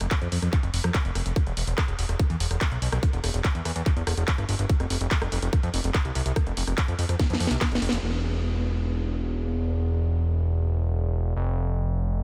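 A straight pulse drives this intense, driving psychedelic trance excerpt, with a tight, up-front electronic kick pounding beneath a layered techno kit of handclaps, hi-hat, rim click and cracking snare. The kit, set back in a larger-sounding room, adds warm hats, while the kick sits in a smaller, closer space. Underneath, a fat analog bass in a low register carries the groove with a thick, detuned sawtooth and square-wave tone, its fast attack and sustained notes shaped by a filter sweep and a moving notch. A drum fill runs from 7.2 seconds into a band accent at 7.9, after which the drums drop out by 8.0 seconds and the bass plays alone. The whole cut carries a light reverb, as it is taken from a longer piece.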